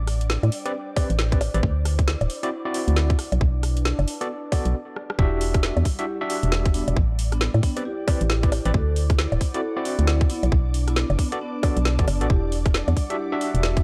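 A skippy two-step garage groove swings along at 135 BPM in E minor, with a tight, up-front electronic kick arriving at 1.0 s beneath woody snare, rim clicks, bongos and metallic hi-hats, while a hollow, dark FM bass with an organ-like bite anchors the low end. Barky, overdriven electric piano stabs with fast tremolo and tape echo ride over a mellow, ethereal pad and a warbling, nostalgic lo-fi pad, both pumping in the background through moody Am11, D9, Bm7 and Em9 changes. After a brief stop at 4.7 s and a drum fill, the drop lands at 5.2 s as a ringing vibraphone melody with slow motor vibrato enters, the whole cut carrying a gritty, dry cassette character.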